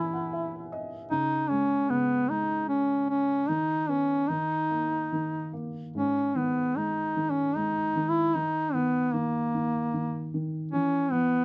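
An up-front solo duduk sings a folk-style melody with vibrato and scooped notes over a soft, boxy, felt-muted upright piano that opens with a brief fill in the first 1.1 seconds, in this gentle, dreamy children's lullaby in G# minor at 76 BPM in a rubato 3/4, tuned to A4 = 444 Hz and captured close and detailed with light reverb in a short excerpt cut from a longer piece.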